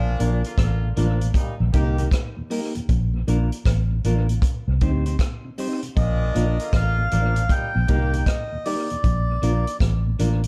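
A distant, roomy horn section with light vibrato opens this sunny roots reggae excerpt, alongside an up-front electric bass that sounds dark, round and foam-muted. Almost at once a vintage drum kit joins with hi-hat, rim click and a punchy kick in a small, natural-sounding room. A clean, picked electric guitar with tape echo and a mellow tonewheel organ, its key click and slow rotary speaker audible in the background, fill out the accompaniment. The groove swings its sixteenths in 4/4 as the chords move between Bb, Eb and C minor. At 6.0 seconds a reedy, breathy melodica takes the melody high above the band, its nasal tone carrying tape echo and plate reverb, and the horns drop out at 8.2 seconds, leaving the warm, lightly reverberant mix to carry on to the end of the cut.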